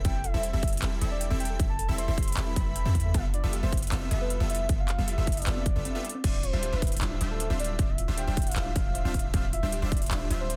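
A deep, boomy 808-style bass pumps up front beneath a punchy layered kick and a big-room kit of crisp hats, handclaps and crash in this bittersweet, dreamy half-time future bass excerpt, where bright detuned supersaw stabs punch out a riff and a round, octave-layered synth lead with chorus, vibrato and dub echo carries the melody while an airy lead and a dark, tine-like thumb-piano pluck with tape echo arpeggiate in the background, all drawn into a dense, heavily limited mix with a brief break at 5.9 seconds.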